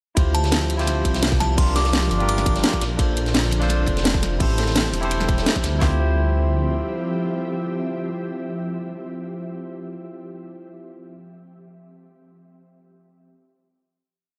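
Liquid drum and bass at 170 BPM in D minor, a short, melancholic and soulful piece built on a drop that runs to 5.8 seconds before settling on a final Dm11 chord. Tight two-step garage kicks, cracking snares and claps lead the drums, with rolling hats from a second garage kit, while a gritty, saturated breakbeat loop with rolled-off top sits in the background and a deep, rumbling detuned saw bass plays long gliding notes up front until 6.8 seconds. A barky tine electric piano carries held rootless chords through a diffuse delay, an ethereal, warbling pad breathes underneath, and a crystalline FM bell adds short answering phrases early on, all in a dreamy mix soaked in lush hall reverb with lossy compression artefacts.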